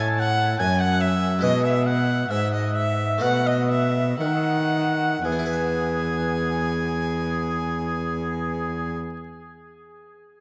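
Serene and dance-like, this short cut from a baroque-style sonata movement with continuo moves with a rubato feel and slows over its first 5.3 seconds, as a smooth, vibrato-laden bowed violin carries the melody above a warm oboe second line with light vibrato, a bright, airy plucked harpsichord accompanies in the background, and a rich, even bowed cello anchors the bass, the ensemble set within the long, wet echo of a vast cathedral.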